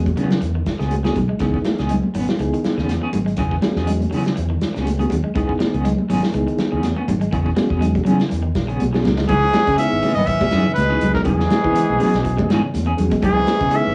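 A lo-fi home cassette recording with a small-room ambience and light reverb carries this driving, defiant afrobeat excerpt in C# minor at 122 BPM, swinging gently on the sixteenths as it rocks between E6 and C#m7. A round, dark fingered bass sits underneath a punchy vintage drum kit with a pumping room sound and rolled-off top, while bright, high-tuned congas, a reedy electric piano with fast tremolo, and two slightly broken-up electric guitars (one twangy and picked on arpeggios, the other dusky on tremolo-treated stabs) fill out the groove. After a drum fill at 9.1 seconds, a clear, up-front trumpet takes the melody at 9.3 seconds, backed by a raspy tenor saxophone with analog delay and a very quiet, veiled cup-muted trombone section.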